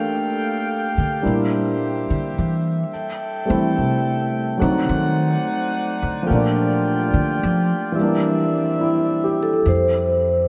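Swung eighths in 4/4 carry this romantic, late-night jazz ballad, cut from a longer piece and bathed in a vast cathedral reverb. A woody, pizzicato upright bass with steel strings takes a featured solo from 1.0 seconds, while an intimate grand piano with audible action noise comps through Gm9, C9 and D7b9 changes, and a dark, close-miked saxophone section holds sustained chords beneath. At 9.4 seconds a mellow vibraphone with soft mallets and motor vibrato rings out the melody just before the harmony settles on Fsus2.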